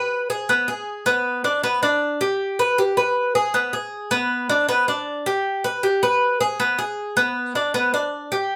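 A straight 4/4 pulse at 157 BPM drives this short latin fragment, cut from a longer piece and lasting 8.6 seconds. A Cuban tres carries the whole passage as a solo, picked on its doubled strings and set in G# harmonic minor, moving between B3 and B4. Its acoustic tone is mellow yet metallic, with some strings doubled at the octave. The instrument sits up front, caught by close, detailed microphones in a moderate studio reverb. The mood is sultry and warm, giving the brief passage an intimate, smoky character.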